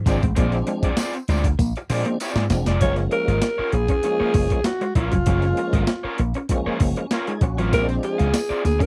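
A punchy, bright slap bass with an envelope filter drives this strutting, energetic funk excerpt at 98 BPM, joined by a gritty, thumpy breakbeat sampler-style drum kit, a lo-fi overdriven garage guitar, a twangy clean electric guitar riff in the background, full tonewheel organ stabs with key click and slow rotary speaker, and a jingly tambourine that drops out at 2.7 s and returns at 7.7 s, while a breathy, raspy alto saxophone takes an up-front solo from 2.8 s over a dry, close 1970s-style studio sound.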